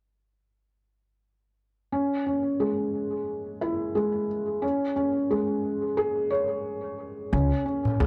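Hypnotic and smoky, this trip hop excerpt at 89 BPM in C# minor opens at 1.9 seconds with a soft, thick-felt upright piano playing arpeggios through gritty 12-bit sampler texture, a low-pass filter and tape echo over C#m and G#sus4, joined at 7.3 seconds by a woody, thumpy pizzicato upright bass on gut strings and at 7.9 seconds by a crisp metal-shell darbuka, all set in a dry, gritty recording with moderate spring reverb and small room ambience.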